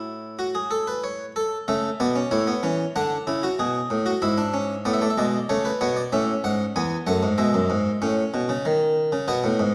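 A lone harpsichord opens this excerpt on a high A5, setting a stately yet joyful tone for a baroque-style three-part fugue in A major. The single Flemish-style instrument has a plucked, round character from one set of strings, and it sits up front in a reverberant recital hall that gives each note a lingering bloom. The tempo is a steady 95 BPM in a straight 4/4, with the voices spread across the range from E2 up to A5. After a brief opening passage, a new section begins at 1.7 s and carries the fugue forward through a clear harmonic path of A, D, E7/G#, A, E and back to A. The harpsichord plays throughout until the fragment is cut off at 9.7 s, mid-flow in a longer piece.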